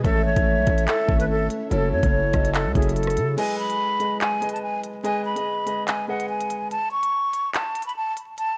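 Dark and tense, this half-time drill cut at 144 BPM in G# phrygian is taken from a longer piece and sits in an echo-heavy mix with light reverb, digital ambience and vinyl crackle. A breathy, close-miked concert flute carries the melody up front from G#4 to C#6, its tongued notes and vibrato softened by a low-pass filter and trailed by analog delay. Behind it, a hollow, woody clarinet-like synth lead warbles a soft second line in the background with chorus and delay, while a very quiet ethereal pad holds sustained chords over A and F#m7. A growling, buzzy 808-style bass and a drill kit with a knocking kick, crisp hats, handclaps, rim clicks and crash cymbal push from the front. The lead drops out at 3.0 seconds, and at 3.4 seconds the pad and bass fall away for a break, leaving flute, drums and a warm, deep-bodied grand piano on G#m until the piano stops at 6.7 seconds.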